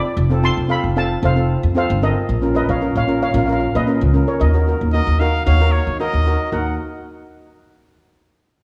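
Two metallic double-second steel pans open this bittersweet, moody calypso fragment, one carrying an airy, mellow melody played with soft rubber sticks and the other an up-front accompaniment struck with medium rubber sticks, while a woody, bright pizzicato upright bass joins at 0.2 seconds and a clear, classical-style solo trumpet adds a quieter second line from 4.9 seconds over chords moving from F to Bbm to Ebm, all set in a moderate concert-hall reverb with small-room ambience.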